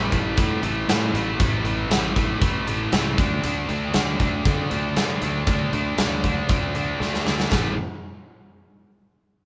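A straight 4/4 hard rock groove drives this heavy fragment of a longer piece, with an up-front acoustic drum kit of punchy kick, medium-tuned snare and hi-hat alongside two picked guitar riffs, one warm and overdriven and the other bright, scooped and high-gain, while a growly fuzz-toned fingered bass anchors the power chords moving from A5 to D5 and back, and a drum fill at 7.0 seconds closes the phrase of a band playing live in one room with light reverb.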